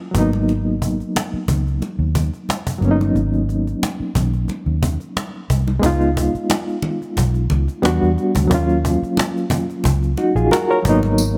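Cinematic and silky, this lush 1970s-style soul excerpt moves at 90 BPM with a light sixteenth-note swing, built around an up-front, reedy, barky electric piano with gentle overdrive and tremolo over a round, punchy, foam-muted fingered bass, a snappy small-room cajon and thin-skinned congas set in the background, while the chords drift from Abm9 through Db7, Em7 and Ebm7 before a jingly tambourine touch at 11.2 seconds.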